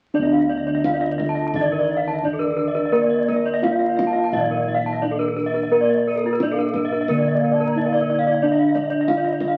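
Through the crackle of a very old 78 rpm record and a moderate studio reverb, this shimmering, brilliant Balinese gamelan fragment in 4/4 with uneven beats sets a mellow, padded bronze metallophone accompaniment in a boxy small room and a close-miked, dry, full metallophone melody beneath two bright, airy horn-mallet metallophones playing arpeggios in paired tuning, while dark, round bossed gongs carry the bass, a deep kendang under soft hands sits in the background, and from 1.1 s a breathy bamboo bansuri with vibrato adds a second line.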